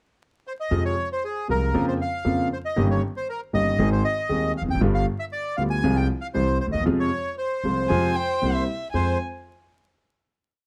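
A dry, close and detailed recording with vinyl crackle frames this short, passionate and dramatic tango in F minor at 117 BPM, played rubato. A reedy, up-front bandoneon carries a motif-based melody from 0.5 seconds, over a clear, vintage concert grand piano with deep bass and a woody, thumpy pizzicato upright bass, both in a milonga rhythm, while a bowed violin enters at 7.9 seconds with expressive vibrato and portamento, answering in the melody's rests. The harmony moves from Fm through Eb7/G, Ab and G7 to C7 before settling on a final Fm chord.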